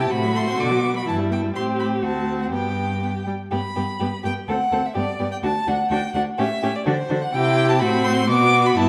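A focused, up-front violin sings the melody with vibrato over a second violin's expressive line with portamento, a rich viola accompaniment and a forward cello bass that also glides between notes, all heard from a distance in a reverberant recital hall in this cheerful, spirited passage cut from a classical-period string quartet movement.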